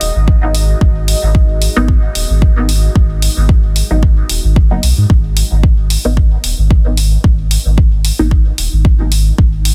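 Cavernous and deep, this dub techno cut moves at 112 BPM in 4/4 with a light 16th-note swing, centred on G# minor. A warbling, moody pad built from sawtooth and sine layers holds sustained chords over a G#7 voicing with chorus, built-in reverb and sidechain pumping, then falls away at 5.1 s as the harmony drops out. Underneath, a round, sine-based sub bass sits up front with a fast attack and its own sidechain pumping, while dark electronic hats tick throughout and a layered, deep kick sits up front from 0.3 s. From 1.8 s a muted, detuned chord stab with a filter pluck and short decay drifts through phaser and dub echo, carrying its own sidechain pumping until 8.3 s. The mix is dry apart from the effects on individual parts, with a dense, heavily limited modern master, and the piece is cut from a longer track.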